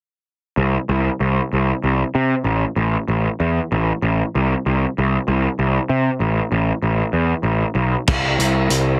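Indie rock in a wistful, jangly mood, moving at 64 BPM in a straight 6/8 and cut from a longer piece. A fuzz-drenched picked electric bass carries nearly the whole fragment from 0.6 seconds, its overdriven, growly tone bright and direct, sitting up front between A1 and C3. A loose indie drum kit arrives only near the end, at 8.1 seconds, with crash cymbal, hi-hat and a punchy kick, its sound gritty and saturated with a rolled-off top. The drums stop at 8.8 seconds, and the bass rings on until 9.0 seconds. The mix is dry and heavily compressed, giving the whole thing a close, radio-like squeeze.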